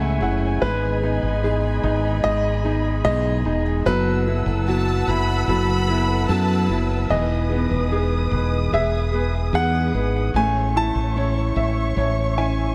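A light reverb and small-room ambience give this tender, hopeful pop ballad an intimate feel, heard as a short cut from a longer piece in E major at a slow 74 BPM in straight 4/4. A bright upright piano with woody tone and audible action noise plays accompaniment throughout, adding brief fills at the opening and again at 12.0 seconds. A clear, polished baby grand carries the melody from 0.6 seconds, with digital delay, over a fingerpicked plugged-in steel-string acoustic guitar whose full-bodied, fresh-stringed arpeggios also pass through delay. Underneath, a dark, round fretless electric bass sits up front, while a muted studio string section holds veiled, con sordino chords with soft attacks and lush vibrato. Between 4.7 and 6.9 seconds a close, biting violin section adds a brief second line, as the harmony moves from Amaj7 through Emaj7/G# and B7sus4/F# back to Emaj7 and Amaj7.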